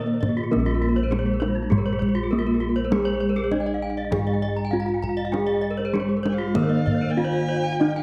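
Balinese gamelan at 100 BPM in 4/4 with a straight feel, this short cut from a longer piece in Bb slendro has a shimmering, ceremonial mood. A bronze metallophone struck with a wooden mallet carries the melody, its paired tuning producing shimmering beats in a close, dry, full sound, while two more metallophones spin arpeggios, one close-miked and ringing, the other bright and airy under a horn mallet with a slapback echo. A further metallophone supplies accompaniment from the background with a vintage, band-limited tone, and bossed gongs hold down the bass with a round, beating resonance placed up front in a boxy small-room sound. A kendang adds deep, acoustic percussion from behind the ensemble. A clear erhu, bowed by one player with vibrato and portamento, sounds only briefly at the start and returns at 6.3 seconds with a focused second line and a smooth top. The whole sits in a moderate recital-hall reverb with a dark, warm production.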